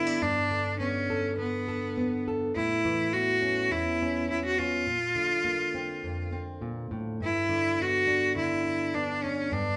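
A wet studio reverb surrounds this short acoustic folk piece, recorded by a band playing live in one room, with the highest treble gently trimmed away. The mood is gentle and peaceful, set in a steady, straight 4/4 feel. A single bowed cello carries the melody up front, its biting, intense tone shaded with light vibrato as it stays within a narrow range. Beneath it, a plugged-in jumbo steel-string acoustic guitar is fingerpicked, dark and full-bodied, ranging from deep bass notes to its upper strings. Both instruments play throughout the 9.8 seconds, moving through Gadd9, Aadd9 and Bbadd9 before settling on G. The clip is cut from a longer piece.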